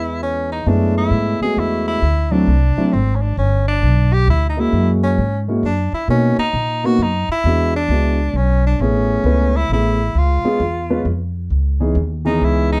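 A warm production with light reverb frames this cool, smoky small-group swing and bop jazz excerpt in F# minor at 133 BPM in a swung 3/4: a clear tenor saxophone carries the melody up front with vibrato and subtone, a dark, mellow concert grand piano with a deep bass register supplies the accompaniment, and a woody pizzicato upright bass on steel strings sits up front, while the harmony moves from C#m7 through D7, Gmaj7 and Bmaj7 before the saxophone breaks into a solo at 11.5 seconds.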